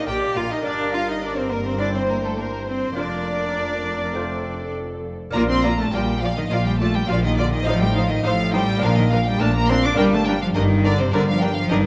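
Brilliant and lively, this baroque-style concerto movement in Bb major moves at 104 BPM with an up-front solo cello carrying the melody over a focused violin section and a close, expressive second violin line, while a delicate fingerpicked gut-string lute, distant viola section and lush dark cello section fill out the background and double basses anchor the low end, all in a moderate concert hall reverb, in a brief cut from a longer piece.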